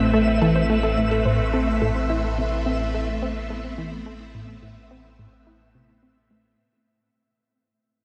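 A punchy, sawtooth-edged analog bass riff, colored by cassette tape, analog delay and a filter sweep, drives this mysterious, hypnotic fragment of sequencer-driven ambient space music, set against swirling, vintage string-machine chords with chorus and phaser, a deep, round sub bass, a sparkling granular shimmer, and a lush, detuned unison pluck arpeggio that drifts in the background until 2.0 s, all bathed in a huge reverb as the passage fades out.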